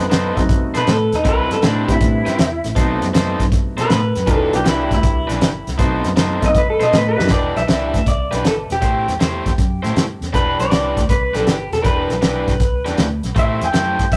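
Electric blues shuffle in E minor at 158 BPM, mournful and brooding, with a swung 4/4 feel and a rough rehearsal-room sound carrying tube saturation in a small room. A slightly broken-up, lo-fi electric guitar through a small old amp carries the melody with spring reverb and analog delay, taking a clean solo over B7b9 and Cmaj7 changes for the first 7.3 seconds, while a warm grand piano accompanies until that point and a bright, crunchy overdriven guitar picks a riff until 14.0 seconds. Round, foam-muted fingered bass and an up-front soul drum kit with a fat snare and tight kick hold the groove, with a drum fill at 7.1 seconds leading into a second section built on Em7 and Am7.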